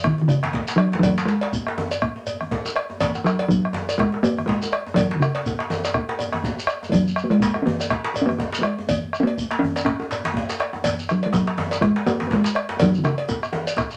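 Powerful and driving, this swung West African drum ensemble sets a resonant, up-front talking drum melody over a dark bombo, high-tuned congas in the background, a metallic cowbell, a grainy shekere and two djembes, one distant with metal rattles and the other tight and cracking, before a drum fill arrives at 12.8 seconds.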